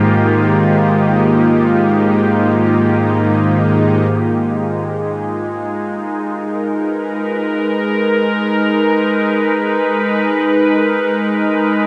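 Melancholic yet serene, this ambient piece drifts in free time in G# dorian, tuned slightly low with A4 at 439 Hz, and is cut from a longer work. An evolving wavetable pad sits up front, holding sustained chords from G#2 to B4 with a slow attack and long release; its morphing, warbling, vintage tone is mellow and full-bodied, thickened by chorus and its own reverb. Beneath it, a bowed-like drone hovers between G#3 and D#4 at a lower level, a nasal, tense, string-like sound with bright vibrato and a noise layer. Both parts sustain throughout the 11.9 seconds. The harmony rests on D#/G# before shifting to G#m69 at 4.1 seconds. The whole is bathed in a huge reverb with an 8.5-second decay, placing the sound in a vast, echoing space.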